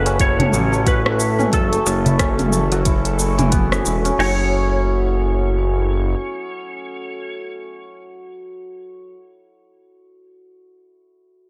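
Bright, lightly reverberant 1980s-style digital production frames this mystical, earthy organic downtempo excerpt with a gentle swing, where an up-front hammered santur shimmers in arpeggios, a clean lap steel guitar sings a slide melody with volume swells through chorus and delay, a saturated sawtooth synth bass sits forward, a very quiet glassy harmonics texture drifts beneath, and a tape-toned electronic drum kit with deep kick, woody snare, smooth hats, rim clicks and toms joins a soft-handed clay darbuka in the background until about 4.2 to 4.4 seconds, as the harmony shifts from F#m7 to F#5 at 4.2 seconds.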